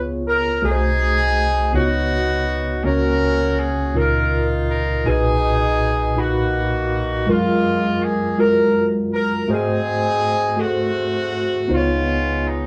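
A warm, roomy pop-style horn section carries the melody from 0.3 s, its ensemble sound distant yet up front, over a mellow, clean tine electric piano that plays the accompaniment in a direct, close tone. This reverent, uplifting gospel passage moves in a slow, straight 6/8, its harmony drifting through rich extended chords such as C#9sus4, Bmaj7 and F#maj9 before settling on C#9. The band plays live in one room with a wet studio reverb, and the recording is cut from a longer piece.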